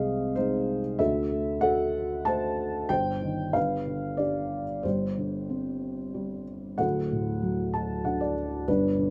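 A rubato piece in 3/4 at 94 BPM sets a cool, brooding mood in this lyrical classical excerpt for a solo felt-muted upright piano, tuned slightly low at A4 = 437 Hz and ranging from D1 to A5 across its 9.1 seconds. The piano sounds soft, dark and boxy, its thick felt giving an intimate, up-front presence within a small room's moderate reverb, while the harmony moves from Ab/C through D7, Cm/G and a Gsus4 before settling on D. A brief piano fill between 7.4 and 8.7 seconds arrives near the close.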